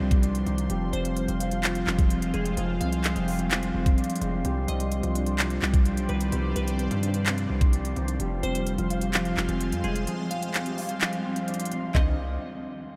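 Melancholic and menacing, this half-time trap excerpt at 128 BPM sets a bright, thumb-plucked concert harp melody with tape echo over a dark, clean electric guitar, an evolving detuned sawtooth pad, a glassy wavetable pluck entering at 0.9 seconds in the background, a heavy saturated 808-style bass and an up-front electronic drum kit of knocking kick, crisp hats, handclaps and toms, with the kick muted from 10.1 to 11.9 seconds, all bathed in a dreamy cathedral reverb as the chords move between Cmadd9 and Fm.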